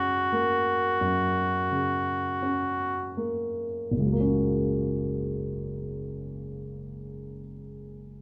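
A clear oboe sings a tender, classical-style line on F#4, up front, before falling silent at 3.2 seconds. Beneath it, a dark concert grand piano accompanies across a range from deep bass F#1 up to F#4, with a mellow, natural tone placed close to the listener. This lyrical romantic duo moves slowly in 4/4 at around 38-44 BPM in F# major, with a rubato feel, resting on an F# chord and slowing down through its opening passage. A second section begins at 3.9 seconds, where the piano carries on alone until the fragment ends at 8.2 seconds. A wet, large studio reverb with a 1.5-second decay surrounds the sound with a spacious air.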